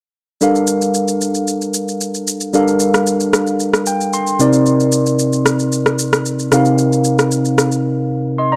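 From 0.4 seconds a clean, up-front tine electric piano with analog chorus moves from Gm7 to Cm7 beside an overdriven electronic shaker and rim click in this hypnotic, late-night amapiano excerpt in G minor at 113 BPM, tuned to A4 = 445 Hz, with a piano fill at 3.6 seconds, the drums dropping out at 7.8 seconds for a break, and a dry, gritty hardware sound touched by digital ambience.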